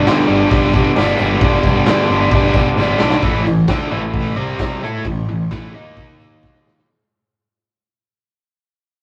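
A biting, overdriven electric guitar sits up front, double-tracked and picked, driving a swaggering riff through this raw garage rock excerpt in A minor at 132 BPM in straight 4/4. Beneath it, a fuzz-laden picked bass growls in the background, while a raw acoustic drum kit of hi-hat, punchy kick and medium-tuned snare pumps in a bright stone room, its sound saturated with vintage 12-bit sampler grit and a rolled-off top. A very quiet, jingly tambourine adds a faint live-room shimmer. The opening passage rests on G before a drum fill at 2.8 seconds carries the band into a second section built on A5, C5 and D#5 power chords, where a fade-out begins at 3.2 seconds and another drum fill from 6.4 seconds closes the cut. The whole thing has the rough, cassette-tape character of a rehearsal-room recording, with a short, moderate booth ambience.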